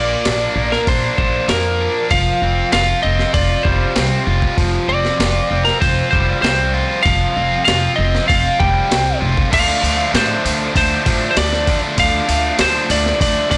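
A blown-out, overdriven, dry recording carries this bittersweet, restless indie rock excerpt, where a lightly driven lead guitar with tape echo sings a slightly broken-up melody over a bright, double-tracked distorted guitar riff up front, a woody pizzicato upright bass and a gritty, compressed breakbeat sampler-style drum kit with a thumpy kick that enters at 0.3 s, the harmony moving from Bb and Fsus2 to Dm7 at 9.5 s.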